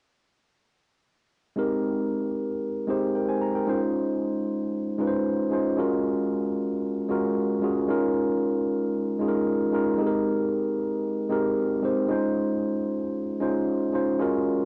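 Amapiano at 114 BPM in Ab major, this soulful, warm fragment from a longer piece features a lone tine electric piano playing accompaniment from 1.6 to 14.7 seconds, moving through lush chords such as Abmaj9, Gbmaj9 and Eb9sus4. The piano sits up front with a clean tone heard through its built-in speakers and carries a cassette tape coloring. The whole take is bathed in a wet studio reverb, and its home-cassette recording leaves the top end dull and softened.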